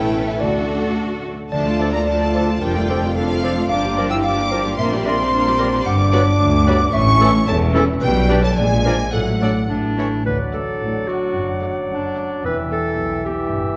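In a straight 2/4 at 110 BPM, this playful, whimsical cinematic cue in D minor turning to D major at 5.9 s sets a vibrato-rich violin section and a dry, airy xylophone on soft rubber mallets on the melody until the xylophone drops out at 9.7 s, over a second violin line, a lush viola section, ringing thumb-plucked harp arpeggios, an intense cello section and focused double basses on the bass, and mellow French horn chords in the background, while a pure, soft-attack flute from 1.5 s and clarinet, distant oboe and roomy bassoon from 1.8 s add their own lines, all cut from a longer piece and set in a wet scoring-stage reverb.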